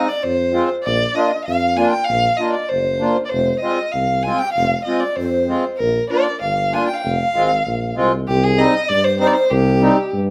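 Recorded live by a band in one room, this klezmer passage carries a moderate studio reverb, and it is cut from a longer piece. A dark, bowed violin sings the melody up front, expressive with vibrato and portamento, a soft attack and a smooth top. Very quiet beneath it, sharing the same range as a second line, an end-blown bamboo shakuhachi adds a hollow, chiffy colour, close-miked with a crisp attack and its own vibrato. The reedy accordion accompanies up front with slow beating, while a mellow, breathy tuba in jazz style holds down the bass, also trembling with vibrato. The harmony sways between Fm and Bb in 2/4 before turning to Cm at 8.3 s, and the mood is festive yet soulful.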